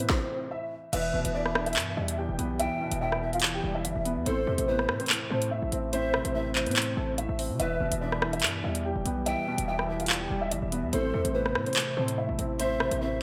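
A half-time drill groove at 144 BPM drives this dark, menacing hip hop excerpt in E minor. Up front, the electronic drum kit pairs a hard-clipped kick and sharp snare with hi-hats, handclaps, rim clicks and crash, all wrapped in gated reverb, while a punchy, heavy 808-style bass with a fast attack and decaying tail anchors the low end. A dark, mellow grand piano carries the melody with audible action noise and an ensemble chorus, joined by a polished, airy pan flute whose tongued, vibrato-laden second line is close-miked and set in delay. A soft, felt-muted upright piano supplies intimate accompaniment beneath them as the harmony moves between Am and Em. At 7.6 s a warbly, lo-fi tape-like pad with a slow attack and long release slips in quietly behind the band, adding nostalgic sustained chords. The mix carries a moderate plate reverb and small room ambience within a bright, 1980s-style digital production.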